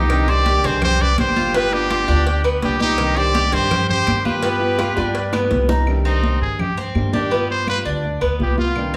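A straight 4/4 Cuban son and guajira groove at 166 BPM in C harmonic minor, sultry and nostalgic and cut from a longer piece, carries a punchy, up-front trumpet with vibrato over a breathy metal flute second line with a crisp chiff that drops out at 5.7 s, a dark fingerpicked flamenco guitar, metallic double-string tres arpeggios and a woody pizzicato upright bass, with ringing high-tuned congas, round low-tuned cowbell and bongos and very quiet claves behind, as a drum fill from 4.8 s leads into a trumpet solo at 5.9 s over Cmadd9 and G7, the mix set back in a wet large studio reverb.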